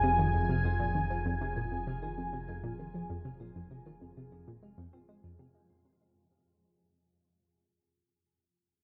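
Hypnotic and expansive, this short fragment of ambient, sequencer-driven space music sits at 98 BPM in 4/4 with a straight feel, resting on a single Fm7 chord in F minor. A swirling, nasal analog pad holds sustained chords from F3 to Ab5, its slow attack and long release shaped by phaser and chorus, and it sits up front until 5.6 seconds. Beside it, a bright, round analog pluck plays a riff between F2 and C4, treated with chorus, tape echo and a filter sweep that runs through the opening 5.5 seconds. Underneath, a fat, thick bass anchors the low F1 with tube saturation and a moving notch, while a very quiet concert harp rings out mellow, fingerpicked arpeggios from F3 to F5, lingering alone until 7.8 seconds. The whole piece floats in a wet cathedral reverb with a 6.2-second decay, carries a cassette-tape character, and fades out across its first 5.5 seconds.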